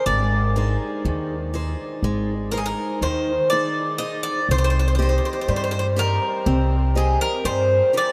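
Set in a straight 9/8 lilt, this reflective, dark fragment of Greek folk music has a bright, metallic bouzouki carrying the melody up front, its doubled strings ringing with some octave doubling. A boxy parlour-style steel-string guitar, picked on fresh strings, supplies accompaniment, while a woody, thumpy pizzicato upright bass on gut strings sits up front underneath. The harmony moves from A-flat to C minor at 4.5 seconds, and the whole band sounds bathed in a vast, echoing space with a long ambient reverb tail.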